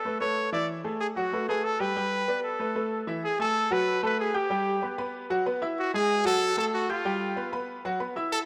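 Joyful and festive, this short Latin excerpt at 189 BPM in a straight 4/4 features a bright trumpet carrying the solo melody up front with light vibrato and a pop-style delivery, while a clear, worn grand piano sits present and forward in accompaniment from 0.1 seconds, the pair heard from further back in the room through a wet plate reverb as the harmony moves from Bm11 into a new passage at 3.2 seconds that circles around F#-rooted chords before closing on G7 and F#7sus4.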